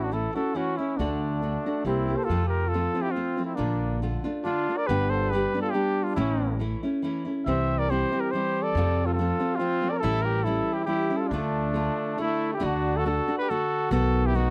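In a straight 3/4 at 140 BPM, this festive, romantic mariachi excerpt in D minor features a warm trumpet with light vibrato and a smooth top carrying the melody in classical style. A mellow second trumpet plays a supporting line beneath it, over a full-bodied fingerpicked nylon-string guitar with audible finger squeak and a woody, growly pizzicato upright bass. The dry, close 1970s-style studio sound keeps the lead trumpet, guitar and bass up front, and the harmony turns from F and Bbmaj7 through A7 to Dm before a closing D and B7.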